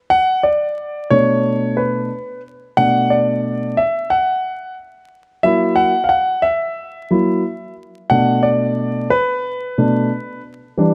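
A dark concert grand piano opens the clip at 0.1 seconds and carries it alone, a cool, smoky hip hop fragment cut from a longer piece. The tempo sits at 90 BPM in 4/4 with a 59% swing on the sixteenths, giving the phrases a loose, lazy lean. In B minor and tuned to A4 = 444 Hz, the harmony moves from Bm7 to F#7 at 5.5 seconds and back to Bm7 at 8.1 seconds. The piano sounds mellow and up front, ranging from B2 to F#5 with a deep bass weight. A moderate echo chamber reverb and a thread of vinyl crackle wrap the whole in a dark, warm production until the piano stops at 10.9 seconds.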